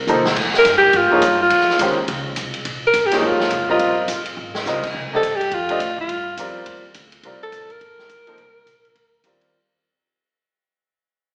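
Heard as a live gig through a venue's PA, with recital-hall reverb and a small-speaker tone, this fading excerpt of hypnotic, searching modal jazz swings at 210 BPM: a clear, up-front alto saxophone carries the melody with vibrato and subtone, a bright, woody upright piano with slapback echo comps over Bbm11 and Cm11, a thumpy pizzicato upright bass sits low in the mix, and a distant, roomy big-band drum kit with a punchy kick and ride cymbal plays fills at 0.1 and 4.4 seconds.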